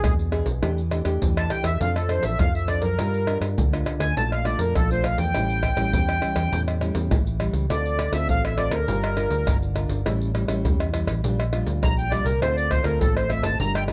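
A reedy, sweet accordion with light tremolo tuning carries the melody up front from the start, soloing throughout this festive, lively samba and choro passage in D minor at 102 BPM. Beneath it, a fingerpicked nylon-string guitar adds classical warmth and audible finger squeak, a dark, foam-muted vintage electric bass stays round and amped, and maracas, a tight surdo, pandeiro and tamborim drive the groove close and up front. The harmony moves through minor-key changes such as Dm7, Gm7, Bbmaj7 and A7, all captured in a dry, close 1970s-style studio sound with small room ambience, cut from a longer piece.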